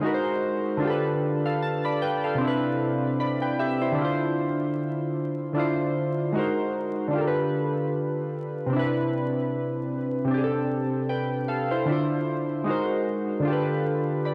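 Analog keys play alone and up front throughout this nostalgic, melancholic hip hop excerpt, their round, detuned tone colored by ring modulation, chorus, tape echo and a softening low-pass filter. At 76 BPM with a lazy 16th-note swing, the chords drift through G#9, G9/D, Cmaj7 and Dm9, with the second passage from 5.6 seconds adding a Cmaj7sus2. A moderate spring reverb, cassette tape character and vinyl crackle give it the intimate, worn feel of a home tape recording.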